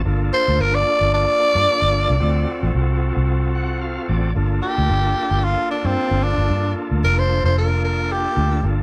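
A raspy, growling tenor saxophone sits up front from 0.3 s, its gritty tone carrying vibrato and a smooth top as it solos over a smoky, soulful straight-eighth soul blues moving between Gm7 and D7#9. Beneath it, a bright, reedy tonewheel organ with key click, light overdrive and a slow rotary speaker comps quietly and adds a fill at 3.3 s, while a dark, round, foam-muted electric bass holds the low end close to the front. The band plays live together in a stone room with moderate reverb, and the piece is cut from a longer performance.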